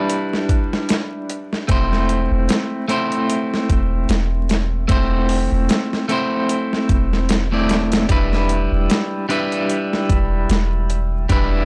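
Trip hop at 75 BPM with a light swing, melancholic and smoky, this short cut from a longer piece opens on an electric guitar at the edge of break-up, picked and up front with tremolo and tape echo over Em7 and Am/E, joined at once by a dusty, compressed sampler-style drum kit with a thumpy kick, medium-tuned snare and hi-hat under overdrive and studio ambience, while a soft, round 808-style bass enters at 1.7 seconds on a deep, dark E1, all wrapped in a dry, gritty hardware sound with vinyl crackle.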